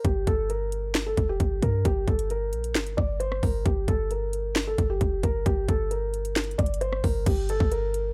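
Brooding, hard-hitting trap hip hop at 133 BPM in a half-time feel in G minor, where a soft, mellow felt-muted upright piano carries an intimate melody through tape echo over a deep, boomy sine-toned 808-style bass and an up-front electronic trap kit of hard-clipped kick, sharp snare, metallic hi-hats, rim clicks, finger snaps and crash, all captured in a dry, gritty hardware sound in this excerpt.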